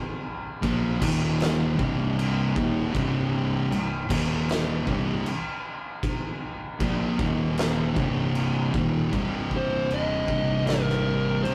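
An oversized, low-tuned drum kit pounds up front with a boomy kick, fat snare, crash cymbal and a gritty, pumping room sound, anchoring this ominous, brooding stoner and doom metal excerpt cut from a longer piece. Two thick fuzz guitars grind out the riff in C minor, one sitting dark in the background and the other glowing forward, while a growly overdriven fingered bass rumbles beneath them with tube saturation. At 9.6 s a distorted fuzz lead guitar enters up front with a short, shadowy melody, all captured in a rough rehearsal-room recording.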